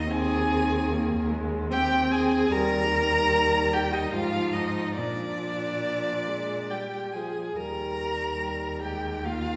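A rich first violin sings the melody up front with vibrato and expressive portamento, while a focused second violin carries a line beneath it, in this lyrical, slow romantic string quartet movement in E-flat major. It moves in a rubato 3/4 at 67-76 BPM. A dark viola with a soft attack and airy bow sits intimately close in the accompaniment, and a smooth-topped cello with vibrato holds the bass as the harmony moves from Ab/Eb through Fm/Ab and Bb back to Eb. All four play throughout this 9.6-second cut from a longer piece, set in a reverberant recital hall with a 1.6-second decay.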